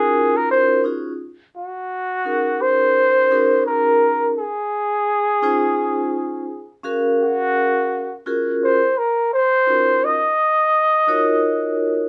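Swung sixteenths at 85 BPM in 4/4 carry this smoky, nocturnal hip hop excerpt, where a breathy, mellow flugelhorn sings a vintage jazz-style melody with vibrato and scooped notes over a dark, metallic vibraphone ringing with slow motor vibrato under medium hard mallets, both up front in a wet live-room reverb as the harmony moves from Ebm7 through Gb6 and Dbmaj9 to Ebsus2 at 9.3 seconds.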